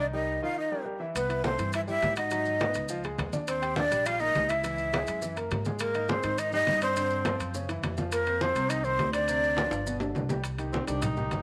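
Afro-Cuban jazz with a sultry, sophisticated mood, this fragment of a longer piece opens on a brief break of breathy, up-front silver flute carrying the melody over a scooped, lightly vibrato tenor saxophone line, intimate grand piano with audible action noise, and woody pizzicato upright bass with tube saturation, before low-tuned damped congas, ringing metal-shell timbales and grainy maracas join at 1.2 seconds, and a drum fill at 9.6 seconds leads through shifting extended chords to a close on C minor in light small-room reverb.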